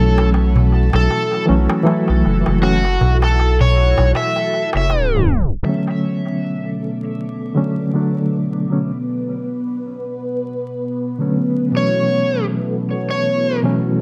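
This dark, cinematic trip hop piece at 79 BPM in B minor opens with an overdriven slide guitar melody over a barky, reedy electric piano with fast tremolo and tape echo, mellow string-machine cellos with phaser and ensemble chorus, and a round, deep analog bass, with a crisp, close darbuka entering at 0.2 seconds. A tape stop begins at 4.9 seconds, after which the bass and darbuka drop out. From 5.7 seconds a filter sweep moves through the string machine as the electric piano carries on and the slide guitar briefly returns, all within a mix of spring reverb, heavy echo and vinyl crackle.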